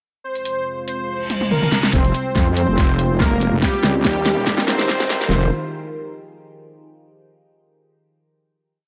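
A half-time 4/4 beat at 142 BPM drives this chaotic, heavy wobble dubstep piece in F minor, where a smooth supersaw repeats a riff in octaves with digital delay over an evolving wavetable pad with chorus, phaser and sidechain pumping, a dubstep drum kit with metallic hats and a huge snare is joined at 1.9 seconds by a second kit bringing a knocking kick alongside a saturated, detuned wobble bass with changing wobble speed, a very quiet reverse cymbal and riser mark the transitions, and a growling distorted saw bass enters at 3.3 seconds with chopped phrases as the build resolves on a final F minor chord at 5.3 seconds.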